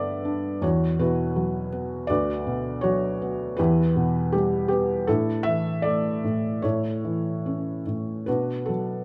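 A felt-muted upright piano, soft, mellow and intimate, sits up front in a dark, wistful classical passage, playing lyrical solo lines in a rubato 4/4 around 73-82 BPM through a moderate recital-hall reverb, moving from Gadd9 through Esus2, Bm/D, Em and Asus4 to A before settling on Bm at 8.3 seconds in this brief excerpt from a longer piece.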